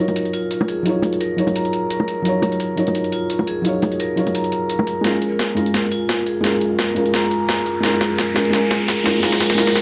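Rolling and lush, this liquid drum and bass excerpt moves at 172 BPM in Bb minor with a light swing on the sixteenths, its dark production bathed in a recital hall reverb. A felt-muted upright piano sits up front, soft and intimate with audible action noise and short sustain, roughened by vintage 12-bit sampler grit and a touch of delay as it voices an Ebm9 chord. Above it, a vibraphone struck with hard mallets rings out bright, metallic arpeggios, softened by a low-pass filter and trailed by dub echo. A compressed, gritty breakbeat kit of hi-hat and snare drives the groove with filtered hats and a medium-tuned snare, joined by round, low-tuned bongos played with soft hands, close and dry, until 4.9 seconds. At 5.0 seconds the harmony shifts to Bbm7, a saturated sine sub bass enters barely audible beneath a drum fill, and from 6.7 seconds an electronic riser in the background builds toward the cut.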